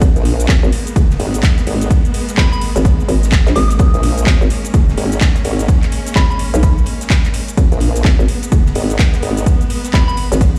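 This bass house excerpt rides a swung 4/4 groove, driven by a punchy, overdriven electronic kick sitting up front alongside a house kit of handclaps, cabasa and metallic hi-hats, with a dry, very quiet reggae kit adding ride cymbal and a high-tuned snare. The mood is aggressive and swaggering. Two basses carry the weight: a hollow, bouncy FM bass with a fast, decaying knock, and a saturated formant-sweep wobble bass built from pulse and sine tones that sustains from 0.2 to 9.4 seconds, both pumping against the kick. Above them a rich bowed string section holds a single G#madd9 chord with expressive vibrato, low-pass filtered and pumping softly in the background. A gentle, pure FM bell melody drifts in at 2.4 seconds, coloured by chorus, phaser and digital delay, and returns for a brief moment near the end. The mix is tight and close, yet carries the booming character of a big sound system playing in a bare stone room.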